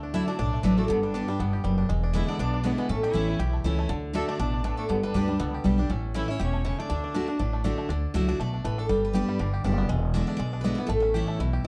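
Rustic and joyful, this brisk bluegrass excerpt runs at 240 BPM in D major with a light swing, cycling through Dadd9, G, E7 and A. A full-bodied, up-front steel-string guitar carries the melody with audible finger squeak, while a second guitar picks bright accompaniment, a twangy fingerpicked banjo adds a percussive melodic line, and a woody, thumpy upright bass plucks low gut-string notes. A smooth fiddle with light vibrato weaves a second line until 7.6 seconds, all set in a dark production with light reverb.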